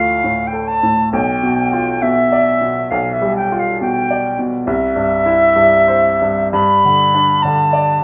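In a rubato 4/4 at 68 BPM, this lyrical romantic classical excerpt tuned to A4 = 443 Hz features a silver concert flute singing the melody between E5 and B5 with a pure, straight tone and crisp attack, while a clear, present baby grand piano accompanies from B1 to D5 through Dm, G7/B, C and G across the 8.0 seconds, all in a light reverb.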